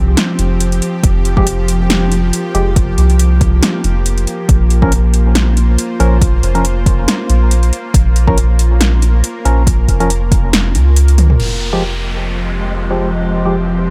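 A tense, string-like drone with vibrato and reverb opens this dark, meditative deep dubstep excerpt in F minor at 139 BPM with a swung half-time feel, resting over a round, up-front sub bass with tube saturation, as a layered electronic kit of punchy snare, metallic hats, crash and toms and an overdriven deep kick, both re-recorded in a large room, enter and are soon joined by hollow, nasal organ stabs treated with chorus and dub echo, before a drum fill at 11.2 seconds gives way to an electronic downlifter at 11.4 seconds and a dreamy, reversed granular texture swelling in the background from 12.5 seconds.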